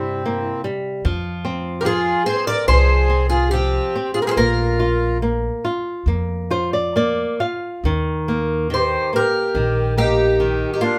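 Passionate and mournful, this short fado-style ballad in Eb major drifts with a rubato feel at roughly 67-75 BPM in 4/4, cut from a longer piece and played live by a small band in a modest room. Up front, a fingerpicked twelve-string acoustic guitar carries the melody with a shimmering, octave-doubled concert tone, while a flamenco guitar adds fingerpicked accompaniment with audible finger squeak and a reedy accordion with slow beating holds a second line. Beneath them, a woody, thumpy upright bass plucks dark gut strings until 10.6 seconds, and a nylon-string guitar fill appears from 6.1 to 7.8 seconds.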